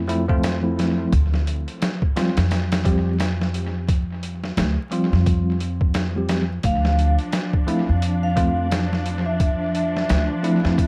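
An overdriven, sampler-style drum kit sits up front with a gritty, thumpy kick and pitched-down, compressed hits soaked in tape echo, driving this hypnotic, smoky trip hop excerpt with a swung sixteenth feel. A woody pizzicato upright bass and a bell-like tine electric piano, its clean tone shimmering with harmonic tremolo and tape echo, carry the minor-seventh harmony in an echo-heavy mix flecked with vinyl crackle. At 6.6 seconds a lush, bowed symphonic string section adds sustained chords, and a moment later a ringing vibraphone with fast motor vibrato and dub echo floats a brief high melody over the top until 10.2 seconds.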